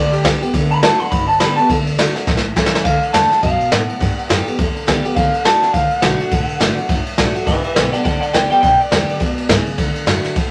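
A swung 4/4 groove drives this rollicking, retro rockabilly excerpt, anchored by a jazz drum kit played with brushes and set up front, with dark cymbals, a medium-tuned snare and a boomy kick, over a woody, thumpy pizzicato upright bass on gut strings. A picked dreadnought acoustic guitar with fresh strings supplies full-bodied accompaniment, finger squeaks and all, while an electric guitar through a small old amp carries the melody with a bright, twangy, slightly broken-up, lo-fi tone, all sitting in a wet studio reverb. The electric guitar opens with a clean solo, a drum fill at 2.3 seconds leads into the next section at 2.8 seconds, and the electric guitar drops out at 9.6 seconds as the others carry on briefly.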